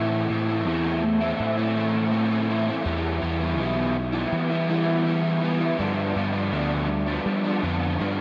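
Post-rock in A minor at 82 BPM, cinematic and melancholic, this short section cut from a longer piece sets an up-front, double-tracked crunchy overdriven guitar riff with ensemble chorus over a fuzzy, picked electric bass with overdrive, both playing throughout as the chords move from Am to Em at 2.9 seconds and G5 at 5.8 seconds, all soaked in a lush, dreamy hall reverb.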